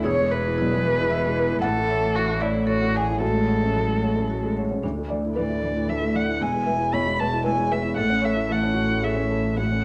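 A single muted violin carries the melody up front, its bowed tone dark and veiled by the mute, played close with vibrato and a slapback echo trailing each phrase. This short cut from a longer neoclassical piece for piano and strings moves in a rubato 3/4 at 114 BPM, with a longing, melancholic mood. A felt-muted upright piano supplies the accompaniment just as close, soft and mellow, with an intimate, natural sound and the audible noise of its action under the thin felt. Beneath them a muted cello sings a smooth second line from the background, while a bowed, muted double bass holds the low end from a distance. A very quiet marimba with medium hard mallets on padauk bars enters at 0.1 s with woody, percussive arpeggios. The harmony moves through E, A, F#madd9/A and Dsus2 before returning to E and A, all set in a moderate spring reverb and small room ambience.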